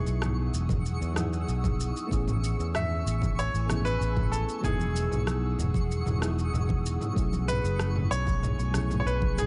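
Sunset chillout in E major at 95 BPM, relaxed and blissful, this short cut from a longer piece drifts through Emaj9, Amaj7 and B13sus4 as a bright, intimate baby grand piano carries the melody with audible action noise and tape echo over a mellow, warbling FM electric piano dulled by a low-pass filter. An ethereal detuned pad with ensemble chorus and tremolo holds sustained chords while a faint granular texture twinkles high in the background. Underneath, a growly, up-front fretless bass enters at 0.1 seconds alongside a tape-warm deep house kit of rim click, shaker and toms. Very quiet, close congas join at 0.2 seconds and a deep electronic kick arrives at 0.7 seconds, all set in light reverb.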